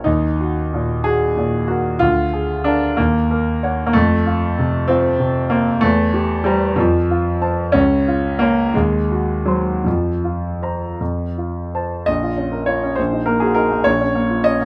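Close, detailed microphones and light reverb place a clear, open concert grand up front, its deep bass anchoring this brooding, stormy romantic character piece for solo piano in a rubato 6/8, which is cut from a longer work and moves through restless minor-key harmonies that pause on a suspended chord and resolve to F before a brief second section from 12.1 seconds returns home to B-flat minor.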